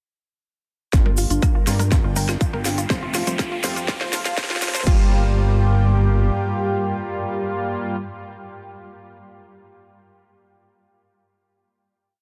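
At 0.9 seconds a driving, melancholic 122 BPM melodic techno build in G minor kicks off with a distorted, up-front four-on-the-floor kick, a cracking snare with claves, smooth hats, crash and percussion blips, a grainy hand-played shaker, a fat dotted-rhythm analog bass, a bright pluck arpeggio drifting against the bar, brassy syncopated synth stabs and a nasal unison lead riff, all under filter sweeps and a background riser, while a breathy pad and a swarming granular drone creep in beneath; the drums fall away at 5.0 seconds, leaving the lead, brass stabs, pad and drone, with the bass lingering until 6.3 seconds, to hold a final Gm7 chord in a dense, heavily limited master.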